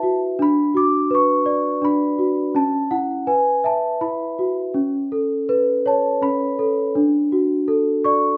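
A large celesta plays alone, bell-like, sweet and ringing, sitting up front in a moderate recital hall reverb across this 8.4-second cut from a longer piece. It is a gentle, sleepy children's lullaby in A major at 82 BPM in a straight 3/4, with the celesta's delicate tone spanning C#4 to D6. The harmony drifts from Bm/D through A, Esus2 and Aadd9 before settling on D at 7.0 seconds.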